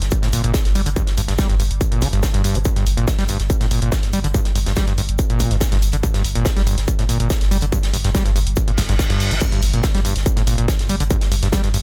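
A thick, saturated sub bass with sidechain pumping sits under a techno drum kit's crash and hats and a small-room unplugged kit of high-passed hi-hat, shaker and snare from the start, joined almost at once by an up-front distorted electronic kick and a squelchy, aggressive sawtooth acid line with chorus and tape echo, in this industrial, hypnotic slice of driving peak-time techno, where a reverse cymbal at 8.7 seconds leads into a drop and an electronic impact at 9.4 seconds.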